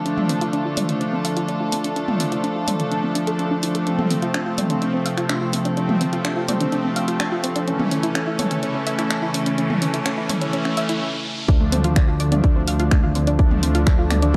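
Melodic techno at 126 BPM in D minor, dramatic and cinematic, opens on a build-up where a reedy chamber string section holds sustained chords under a low-pass filter, a soft, round pluck spins delayed arpeggios through a filter sweep, and a brassy, nasal analog pad punches up-front stabs, all three pumping against the sidechain while a house kit of finger snaps, hi-hat and toms ticks along. A background riser climbs from 7.5 seconds into a brief break, and at 11.5 seconds the drop lands with a punchy electronic kick and a fat, saturated analog bass pumping on D. The chords move from Dm through F and A back to Dm in a dark production with a lush hall reverb, and the recording is cut from a longer piece.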